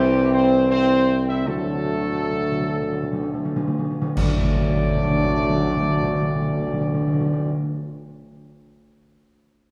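Majestic and solemn, this classical ceremonial fanfare in triple time opens with a slowing pace: a mellow, vintage-toned trumpet section carries the melody over sustained chords from a dark, tightly blended trombone section and a distant, lightly vibrato French horn section in the background, all anchored by a present, warm solo tuba. At 1.5 s the harmony moves from C to D as up-front timpani played with medium mallets enter with a fill, and at 4.2 s close clash cymbals with dark cymbals and concert bass drum join a band accent. The brass sits in a wet recital hall reverb, lending this fragment of a longer piece a stately grandeur.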